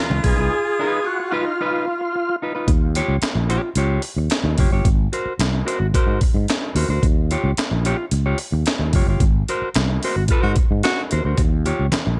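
A strutting, energetic funk excerpt opens with an overdriven tonewheel organ carrying the melody through slow rotary speaker, chorus vibrato and analog delay, its thick, gritty tone full of key click, joined by a clear, punchy baritone saxophone on a second line that drops out at 2.4 seconds and returns briefly around 10.4 seconds. Underneath, a dark, clean electric guitar plays fingered accompaniment, while a growly, amped fretless bass and a compressed, pitched-up breakbeat kit with a thumpy kick, high-tuned snare, handclaps and hi-hat sit up front, and band-limited vintage congas sound in the background at the start and again near the end. A break runs from 0.5 to 2.7 seconds, and a band accent arrives at 9.2 seconds over ninth chords, all set in light reverb.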